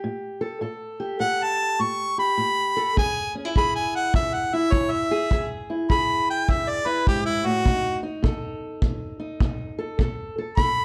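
A dark, warm production with moderate studio reverb frames this swaggering, soulful acoustic country blues excerpt in a swung 4/4: a boxy, fingerpicked parlour steel-string guitar lays down the accompaniment from the start, a bright, close-miked harmonica takes a jazz-style solo from 1.2 seconds with light vibrato and scooped notes, and a punchy, natural kick drum played with brushes joins up front at 3.0 seconds as the chords move from A7sus2 to E and B7.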